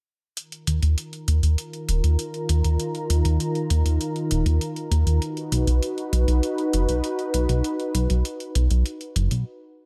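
Synthwave at 99 BPM in Eb minor, cinematic and nocturnal, cut from a longer piece: a smooth, detuned sawtooth pad with chorus and a filter sweep holds sustained chords from Ebsus2 to B, an electronic hi-hat with a tape-warm, small-room character ticks along from 0.4 seconds, and a glossy, nasal, dark chorused pulse-wave bass with a plucky filter sits up front from 0.7 seconds, all dry and close until a stop at 9.5 seconds.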